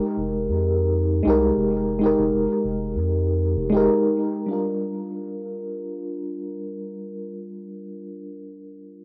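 A mellow FM electric piano opens this wistful sunset chillout fragment at 97 BPM in a straight 4/4, its soft, warbling, vintage tone coloured by chorus, tremolo and tape echo. The bass arrives at 0.2 seconds with a round, deep, dark presence that sits up front under the keys, and it stops at 3.9 seconds. The piano carries the harmony over an Fm11 chord before shifting to Gm7 at 4.5 seconds and continuing to the end of the cut, staying in a middle register and keeping its decaying, faintly noisy character. The room is a booth with a moderate, brief ambience, and the home cassette recording gives the whole passage a warm feel. This short excerpt is taken from a longer piece.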